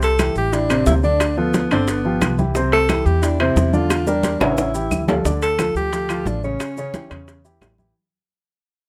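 A clear, close-miked alto saxophone with vibrato carries the melody up front in this lively, danceable Afro-Cuban jazz excerpt at 178 BPM, backed by a warm, natural-sounding baby grand piano, a dark, thumpy pizzicato upright bass with gut strings, and percussion of thick-skinned congas, tight high-tuned bongos, ringing vintage timbales, woody claves and grainy maracas, with a drum fill from 3.9 to 5.3 seconds before the dry, detailed recording fades out from 5.3 seconds.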